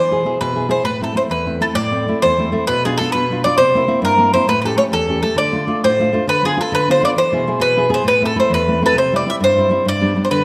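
A moderate concert hall reverb, with a 2.1-second decay, gives this short Italian folk serenade an open, resonant space, while both instruments sit up front. The bowl-back mandolin carries the melody in a bright, picked voice whose double strings ring together, staying between G#4 and E5. Beneath it, a full-bodied nylon-string guitar fingerpicks the accompaniment from E2 up to G#4, its deep classical tone marked by finger squeak. The piece moves at 134 BPM in a straight 6/8 in A harmonic minor, tuned to A4 = 441 Hz, with a passionate, romantic mood. The harmony starts on E and turns through Am, Bdim, C7, A7, Dm and back to E and Am, and a new section begins at 9.0 seconds with C moving to G. Both parts play throughout this fragment, which is cut from a longer piece and ends at 10.4 seconds.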